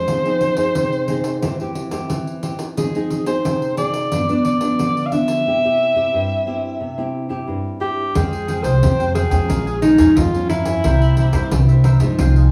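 Bittersweet yet lively, this samba and choro excerpt in F minor moves at 89 BPM, with a clear, forceful alto saxophone carrying the vibrato-laden jazz melody up front under plate reverb, a fingerpicked classical nylon-string guitar and jingly, close and dry pandeiro accompanying from the start, and a crisp picked cavaquinho and a woody, thumpy pizzicato upright bass joining around 8.1 seconds as the harmony shifts from Fm7 and G7 toward Fmadd9, Bbm7 and C7 in a studio room heard from further back.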